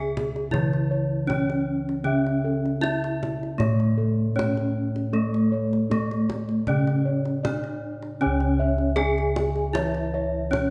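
This excerpt of Javanese gamelan opens with a bright bronze metallophone carrying the melody up front, its horn mallet strikes ringing with the shimmering beats of paired tuning. Beneath it, a second metallophone struck with a wooden mallet supplies a dark, smooth accompaniment, while bossed gongs played with padded beaters spin mellow arpeggios and another set of bossed gongs anchors the bass with round, soft tones. At 0.2 seconds a kendang joins with hard hands, its sound tight, compressed and saturated. At 8.2 seconds a third metallophone, also wooden-mallet and pair-tuned, adds shimmering arpeggios in the background as the opening material returns. The mood is stately, and a moderate recital hall reverb lends the ensemble a gently rounded bloom.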